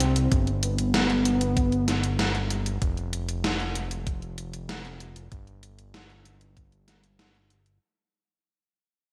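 A velvety synth lead with chorus and delay opens this cinematic, nostalgic synthwave excerpt alongside a fat, detuned sawtooth bass and an up-front 80s digital drum machine whose hi-hat and gated-reverb snare ring through a lush hall. A thumpy electronic kick joins at 0.3 s over a G chord, and the smooth, vibrato-tinged lead falls away at 2.7 s, leaving bass and drums to carry the bright 1980s-style production. The whole passage fades out from start to finish.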